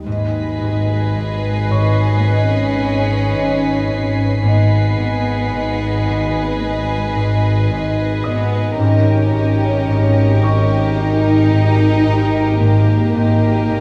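A ringing, fingerpicked concert harp riff leads this ominous, mysterious suspense cue, set over a dark, sul tasto cello section, a rich double bass section and a calm, organ-like sine drone with ensemble chorus, while a distant, woody violin section holds the melody, a close violin section carries a pure second line, a high, intimate violin texture stops at 8.2 s, and an intimate vintage grand piano with audible action noise sits in the background, in a moderate scoring-stage reverb as the harmony shifts at 8.8 s.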